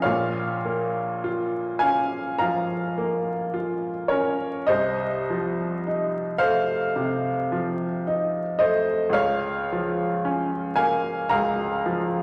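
Melancholic and wistful, this short passage from a longer romantic nocturne for solo piano unfolds in Bb minor at a slow, rubato pace of roughly 49 to 57 BPM in 4/4. A single upright piano carries everything from 0.0 to 12.2 seconds, ranging from Bb1 up to Bb5. Its tone is clear, woody and intimate, placed up front with a natural character, and the mechanical noise of its action can be heard beneath the notes. The harmony moves from Bbm to F7/C at 4.7 seconds and settles on Bbm/Db at 9.2 seconds. A wet recital-hall reverb lingers around the piano, while a layer of vinyl crackle lends the recording a worn, nostalgic patina.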